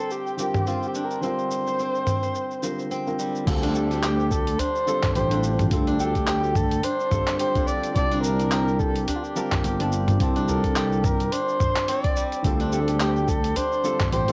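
Hypnotic and warm, this organic downtempo excerpt at 107 BPM in 4/4 with a swung sixteenth feel opens on a glassy, drifting harmonics texture, a soft felt-muted upright piano with sidechain pumping, silvery fingerpicked steel-string zither arpeggios and a gritty, dusty soul sampler-style kit under a filter sweep, while a dark, woody kamancheh carries the bowed melody with vibrato and portamento over Csus2 and Dm7, these three melodic voices soaked in tape echo, until at 3.5 seconds the glass texture drops away and a growly, punchy fretless bass with tube saturation and chorus arrives alongside a thumpy electronic kick, with a deep, saturated udu slipping into the background from 4.6 seconds, the whole captured as a lightly reverberant cassette home recording.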